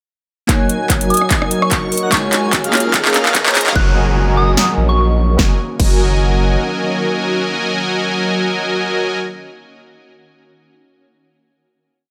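A half-time beat at 147 BPM in 4/4, with a light 16th-note swing, drives this bright, playful future bass piece in Gb major: a punchy electronic kick and a layered big-room kit with a punchy snare, claps, rim clicks, a crash and metallic hats that break into rolls. From 0.5 seconds, a build-up with a drum fill sets a smooth, detuned supersaw riff of dotted-rhythm chords in front, its filter sweeping beneath a phaser. Around it sit glassy digital keys playing held chords with syncopated pushes, a pure FM synth bell tracing short answering phrases high up, and an airy, dreamy lead of arpeggios with gentle vibrato, all pumping under sidechain, while a very quiet riser and downlifter mark the transitions. At 3.8 seconds a deep, thick, saturated sub bass arrives with long gliding notes as the piece moves into its outro over chords that settle back on Gb6. Having entered at 1.6 seconds, a shimmering, ethereal granular pad with an octave-up sheen carries the final chord from 5.4 seconds through its long release, the whole mix touched with light reverb.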